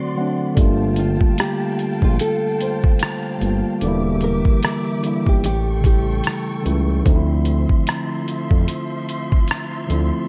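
A mellow tine electric piano opens this nostalgic, reflective lo-fi hip hop excerpt with a short fill, laid over a bed of bowed studio strings, both softened by a low-pass filter. At 0.6 seconds a muffled, pitched-down sampler-style drum kit arrives with a thumpy kick, hi-hat and rim click, along with a smooth synth bass that blends sawtooth and square tones with vibrato. The drums, the bass and the clean electric piano sit up front, and the relaxed swung groove moves through jazzy chords such as Gm9, Em7b5, A7 and Dm9. A fingerpicked nylon-string guitar carries a full-bodied melody from 1.0 to 6.2 seconds, filtered and trailed by delay. Behind it the string ensemble adds expressive portamento, while light reverb and vinyl crackle wrap the mix in a faded glow.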